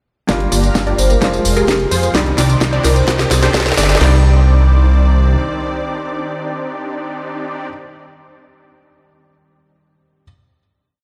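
This whole piece sounds as if it were played through a big sound system in a bare stone room, with a light stone-room reverb around it. It is anthemic, euphoric festival progressive house in C minor at 129 BPM, built on a straight 4/4 pulse and moving through Gm7, Fm and Cmadd9. The opening build-up is driven by two overdriven, layered electronic drum kits. One carries a punchy four-on-the-floor kick, a cracking snare and crash, and the other adds bright programmed hats, tambourine and a backbeat snare, all rolling into a drum fill. Beneath them, a fat, up-front analog bass pumps with the sidechain in driving eighth notes. A dotted-rhythm supersaw stab riff, airy and detuned, moves through a filter sweep with delay. A faint riser and a mellow marimba with soft mallets, playing short answering phrases in the background, also join the build. At 4.0 seconds the drums drop away and the piece settles onto a final chord. 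From the start, a lush, chorused pad with a slow attack holds the harmony, and a very quiet, wave-folded unison pluck doubles those chords in arpeggios, both lasting until 7.7 seconds. An intimate, slightly worn baby grand piano, with its action noise audible, plays held, close-voiced chords with syncopated pushes throughout and rings on alone until 10.2 seconds.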